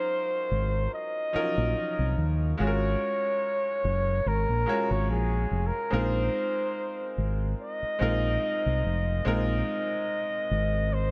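A gently swung 72 BPM groove in 4/4 carries this introspective, smooth neo-soul R&B excerpt. A breathy flugelhorn with light vibrato and analog delay sings the melody up front, while a bright concert grand piano accompanies through Ebm9, Ab13sus4 and Bb9sus4. A round, punchy fingered electric bass enters at 0.5 seconds, and everything sits in a dreamy mix soaked in plate reverb.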